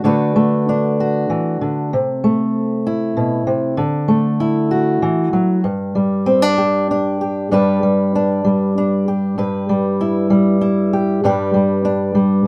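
Folk piece for solo fingerstyle acoustic guitar, peaceful and hopeful, moving at 97 BPM in an unhurried 3/4 with a straight feel in G major. A single fingerpicked steel-string acoustic guitar carries the whole 12.5-second passage, sitting up front with a dark, concert character across a range from G2 to B4. The harmony drifts through D6, Am/C, Dadd9 and G5 before settling at 7.5 seconds into a second section built on G and Em/G, returning home to G near the close. A moderate small-room reverb gives the instrument a close, intimate space. The clip is cut from a longer piece, so it begins and ends mid-flow.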